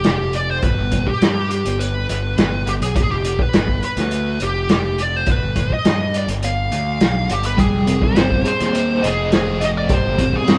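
A band playing live in a stone room with moderate reverb opens this hypnotic, dark psychedelic rock excerpt at 104 BPM in G phrygian dominant. A dark, smooth lead guitar with wah and overdrive carries the melody up front over a round, fuzzy picked bass and a muffled, lo-fi vintage drum kit with a tight kick and medium-tuned snare. At 7.6 s, as the harmony moves from G7 to Ab, a bright, crunchy, double-tracked overdriven guitar enters with a tremolo riff.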